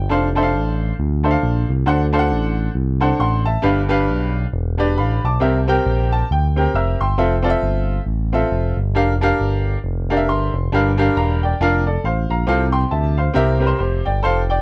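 Heard through worn, warbling cassette tape with little reverb, this reverent, soulful uptempo gospel excerpt swings at 136 BPM in F major, as a bright, woody upright piano comps up front and breaks into fills at 5.9 and 9.8 seconds over a smooth, dark, gliding synth bass with detuned sawtooth tone, vibrato and portamento, moving from F6 and D7 through Fmaj7 and Gm7 to a closing C7.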